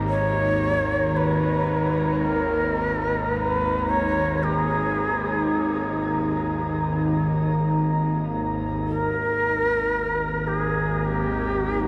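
Soaked in a huge, dreamy reverb, this ominous, cavernous dark ambient drone in free time and G# minor opens with a deep, moody pad holding sustained chords and a tense, string-like bowed drone with vibrato sitting low in the register, while a breathy bamboo shakuhachi carries a vibrato-tinged melody through shimmer reverb and delay, and barely audible bronze carillon bells ring out arpeggios from 8.8 seconds in this excerpt cut from a longer piece.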